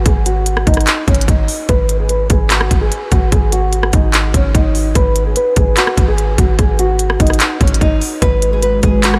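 A dreamy, reverb-soaked mix casts an eerie, brooding mood over this short trap excerpt in G# minor at 147 BPM with a half-time feel. Deep, boomy 808-style bass and an up-front electronic drum kit, with a hard-clipped kick, crisp hats, handclaps and rim clicks, drive beneath a bright, fingerpicked nylon-string guitar melody that runs through a low-pass filter sweep. At 8.3 seconds a detuned, airy analog pad with chorus slips in on a G#m7 chord.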